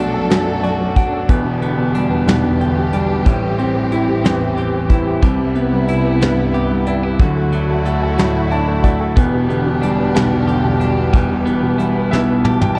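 In a six-eight metre with a straight feel, a soft brush drum kit with a tight kick and medium-tuned snare sits up front from 0.3 seconds, anchoring this aching, melancholic pop ballad cut from a longer piece. A clear, intimate grand piano carries the accompaniment with audible action noise and adds fills from 0.3 and 8.2 seconds, while a bright, compressed twelve-string electric guitar picks arpeggios and a dark studio string section holds lush, bowed chords with expressive vibrato. The harmony moves from Bm7 through Em7, Am7, Cmaj7 and Dadd9 back to Em, and a piano and drum fill at 12.1 seconds closes the passage in a small room with a warm production.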